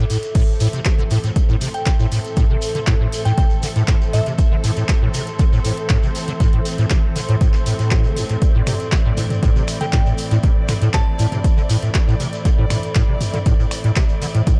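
The mix is dark and dry, with an overdriven electronic kick pushed up front and a punchy analog drum machine, also overdriven, adding crash cymbal, finger snaps, handclaps, hi-hat and toms. This hypnotic, raw acid house piece, cut from a longer track, rides a straight pulse over a single A minor chord. A squelchy, hollow square-wave acid bass plays its resonant riff with a filter sweep and an ensemble chorus. A clear, focused studio string section holds bowed chords with vibrato from 0.4 seconds, pumping against the kick, while a warbling, nostalgic tape-like pad sits in the background with its own chorus, reverb and pumping. A grainy, distant shekere plays in a large room behind everything, and a glassy, crystalline FM bell with chorus and delay drops in briefly around 1.7 and 9.8 seconds.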